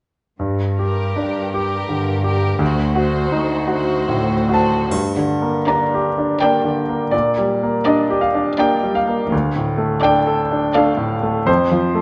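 Passionate and tragic, this romantic classical movement for piano and orchestra in G minor flows in a rubato 3/4 at 83 BPM, with an intimate, up-front baby grand carrying the melody, its action noise audible, over a lush, distant cello section bass and an intense violin second line, while a triangle sounds briefly from 4.9 seconds and, from 5.7 seconds, a focused violin melody and an even viola accompaniment join in the background, set within a moderate scoring-stage reverb.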